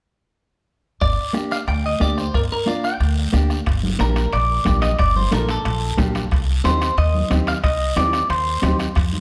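A twangy, picked electric guitar carries the melody up front in this driving, fiery cumbia excerpt, its bright, compressed tone bathed in spring reverb. Beneath it, a woody, thumpy pizzicato upright bass sits close to the listener, while a soft-beaten bombo resonates in a live room and a raspy guiro scrapes close and dry. A second electric guitar, dark and fingered, supplies clean accompaniment in a lower register. At 3.7 seconds, thin-skinned congas played with soft hands and ringing metal-shell timbales with a vintage, band-limited character join from the background, giving the groove more heat. The harmony shifts at 6.3 seconds, and a light reverb lends the whole ensemble a touch of shared space.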